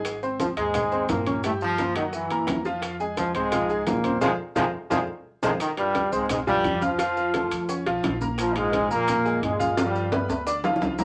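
Fiery and danceable, this salsa excerpt in F minor drives along at 173 BPM in a straight 4/4 feel. A punchy trombone section carries the melody up front from 0.4 seconds, its tight ensemble sound marked by light vibrato and a smooth top, while a brilliant, slightly detuned upright piano with audible action noise and long sustain fills out the accompaniment beside it. Underneath, a woody pizzicato upright bass anchors the harmony as the chords move from Abmaj7 through Ebadd9 and Gb7 to Fm, later touching Faug, Bb5 and G7. The percussion bed combines ringing metal-shell timbales, low-tuned congas struck with hard hands in the background, very quiet high-tuned bongos, and grainy, mellow maracas. Drum fills arrive at 4.2 and 9.8 seconds, the first coinciding with a full band accent, and the whole track sits in a small room with a layer of vinyl crackle.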